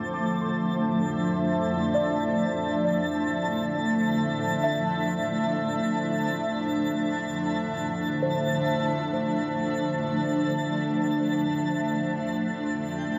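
Reflective and spacious, this ambient passage cut from a longer piece drifts in free time in D minor, resting on a single Dm9 chord with tuning set to A4 = 444 Hz. Up front, a granular cloud pad holds sustained chords that feel blurred and evolving, its detuned unison voices swelling in slowly and releasing at length through built-in reverb. Muted, felt-like synth keys sit in the background, playing soft, intimate arpeggios with a warbling, vintage character, a dark filter sweep, chorus and delay, before falling away at 12.8 s. Beneath them, an organ-like drone on D3 hums with a calm, nasal tone thickened by ensemble chorus, while a twinkling granular texture adds a sparkling, octave-up shimmer high above. The whole mix is soaked in a cathedral reverb with a 6.2-second decay, giving the sound a dreamy quality.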